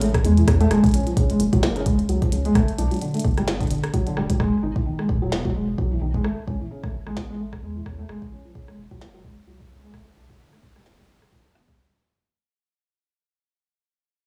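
Intricate and playful, this swung IDM fragment, cut from a longer piece and fading out across its 11.8 seconds, sets soft, thick-felt upright piano arpeggios with audible action noise, filtered and tape-echoed, over a hollow, bouncy, wave-folded square bass, both under filter sweeps, while a deep electronic kick and a glitchy kit of clicky hats, rim clicks and a tiny tape-echoed snare tick through light reverb above shifting Amaj7, F#sus2, Gmaj7 and Emaj9 harmonies.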